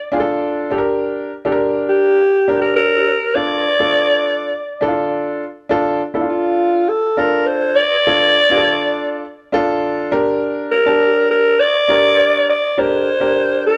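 Urgent and passionate, this soul excerpt at 102 BPM in D minor features a raspy, growling alto saxophone carrying the jazz-style melody with vibrato and plate reverb, backed by a woody, clear upright piano with long sustain over shifting Dm and Gm chords in a moderately reverberant studio room.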